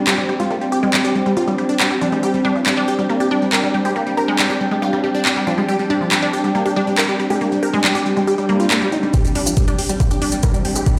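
Intense and hypnotic, this psychedelic trance excerpt at 139 BPM sets a punchy, detuned supersaw stab melody over a ring-modulated unison pluck riff, an evolving, morphing wavetable pad and a warbling, nostalgic tape-like pad, all pumping with sidechain as an overdriven garage kit of handclaps and metallic hats sits up front. A filter sweep moves across the ambient pad until a background swell and riser arrives at 8.4 seconds, leading into a build-up at 9.1 seconds, where a knocking, overdriven electronic kick and close, grainy maracas join. The mix sounds as if played through a big system in a bare room, with a moderate plate reverb and a large studio reverb.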